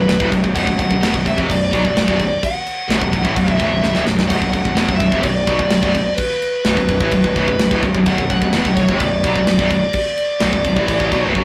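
Relentless and heavy, this short heavy metal passage, cut from a longer piece, sits on a single B minor chord in straight 4/4, with a dark, high-gain lead guitar carrying the melody over a bright, scooped rhythm guitar and a second tight distorted guitar tucked into the background, both playing the riff. Beneath them a growly, fuzz-laden picked electric bass holds the low end, while an up-front acoustic metal kit with a tight kick, medium-tuned snare and bright crash and splash cymbals drives along and breaks into a fill from 3.8 to 4.3 seconds. The sound is that of a rough rehearsal room, with moderate small-room reverb, tube saturation and a faint mains hum.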